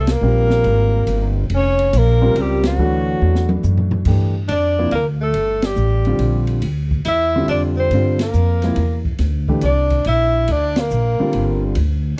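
Swinging in a lilting three, this spiritual, cool modal jazz excerpt sets a mellow, subtoned alto saxophone melody over a clear tenor saxophone second line with scooped notes, both breathy with light vibrato, above woody, growly pizzicato upright bass placed up front, an accompanying grand piano with deep bass, and an open acoustic drum kit with a high-tuned snare and boomy kick that plays a fill from 3.2 to 4.1 seconds amid recurring band accents, all captured in a dry, close 1970s-style studio sound.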